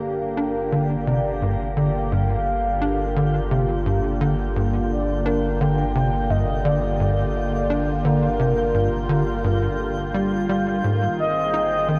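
Awash in a huge, wet ambient reverb and the warbling pitch drift of worn old cassette tape, this excerpt of sequencer-driven space music feels mysterious and hypnotic at 86 BPM in a straight 4/4, set in G phrygian. A tight, punchy sequencer bass drives the piece from 0.4 seconds with a plucky, fast-decaying sawtooth-and-square riff, dressed in lush chorus and analog delay, while a deep, round sine sub bass holds the low end. Above it, a swirling, detuned analog pad sits bright and up front with sustained chords, thick with phaser, chorus and shimmer reverb. A mellow, horn-like vintage synth lead carries the melody with soft attacks, vibrato and a filter sweep, its sound softened by subtle chorus, shimmer reverb and analog delay. In the background, a sparkling granular FM texture fades in from 0.6 seconds with an octave-up shimmer, as the harmony rests on Gm7 before moving to Ab6 at 10.8 seconds.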